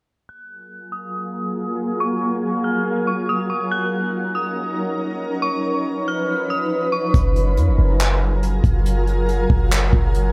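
A dark, detuned synth bell opens this excerpt of atmospheric cloud-rap at 0.3 seconds, carrying an eerie, warbling melody with an inharmonic, vintage FM tone that is softened by chorus, a low-pass filter and a digital delay. At 1.0 seconds a shimmering ambient pad joins with sustained chords, its ethereal, granular texture lifted by an octave-up shimmer, slow attack and long release, and it pumps from sidechain compression under built-in reverb. A filter sweep runs through this floating opening as the harmony moves from F#maj9 through D#m7 and C#9. At 7.1 seconds the chords return to F#maj9 and the half-time groove arrives: a clean, deep 808-style bass with a sine tone and fast, decaying notes sits up front beside a jazz brush drum kit. The acoustic kit sounds natural and close in a small room, pairing a boomy kick with handclaps and brushed hi-hat, all under a light reverb that keeps the dreamy mood intact.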